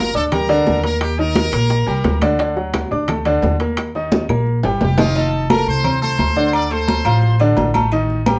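A brilliant, tight trumpet section opens this fiery salsa fragment together with an up-front, clear baby grand piano and a dark, woody pizzicato upright bass on steel strings, all driving along at 174 BPM in a straight 4/4. The horns carry the melody with vibrato in a present, pop-style sound, dropping out at 2.2 seconds and returning at 4.8 seconds, while the piano's short-sustain accompaniment and the bass run throughout. Bright, high-tuned congas, ringing metal-shell timbales with agogo bells, and very quiet, woody claves fill out the percussion, and round, low-tuned bongos struck with hard hands sit in the background until 5.1 seconds. A drum fill bridges into a new section at 5.2 seconds, as the harmony moves from Gm7, Ebmaj7, D and Eb toward F7 and Dm7. The band plays live in one room with a moderate studio ambience, giving the congas a live-room feel against the closer, drier metalwork and claves.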